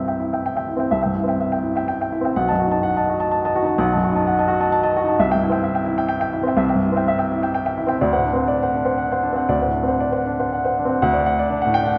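In a rubato 3/4 at 125 BPM, this wistful, melancholic neoclassical minimalist piano piece, cut from a longer work, moves through C, B7, C and D7 before settling on D at 11.0 seconds. A dark, mellow baby grand plays alone and up front from B1 to A5, its short, smooth, vintage tone set in the wet 2.0-second reverb of a church or concert hall.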